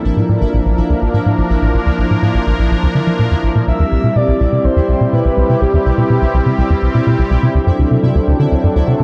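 Ambient, sequencer-driven space music in 4/4 at 124 BPM with a straight feel, this excerpt feels expansive and luminous, moving from Bb to Cmaj7 at 3.7 seconds and D7 at 7.5 seconds. Up front, a tight, punchy sequencer bass drives a sawtooth and square-wave riff with ring modulation and a plucked filter, its dark, decaying notes treated with analog chorus and analog delay while a filter sweep runs across the whole passage. Beside it, a sweeping resonant pad holds sustained chords, a bright, airy, detuned sawtooth sound with a noise layer, soft attack and long release, evolving through a filter swell under chorus. Deep in the background, a pulsing gated texture of tempo-synced unison triangle tones swells in with a slow attack and lingers in its own reverb. Between 3.7 and 6.3 seconds a breathy, flute-like synth lead of triangle and sine with a noise layer carries the melody, softened by tremolo, vibrato, lush chorus and analog delay. 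A huge ambient reverb with a decay of 8.1 seconds frames the dark production.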